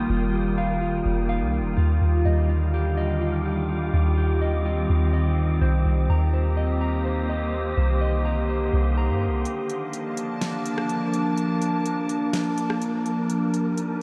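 A glassy FM pad with ensemble chorus, a mellow electric guitar playing arpeggios through lush chorus and delay, a soft, round 808-style bass and a breathy, wind-like tuned noise texture open this blissful, floating cloud-rap excerpt in Bb major at 125 BPM in a half-time feel, drifting over F9sus4, Ebmaj9 and Cm7 in a dreamy mix soaked in huge ambient reverb, until guitar and bass drop away near 9.5 seconds and a smooth R&B kit with a fat snare, rim click and hi-hats, roughened by vintage 12-bit sampler grit, carries the break over Bbmaj7 beneath the lingering pad and texture.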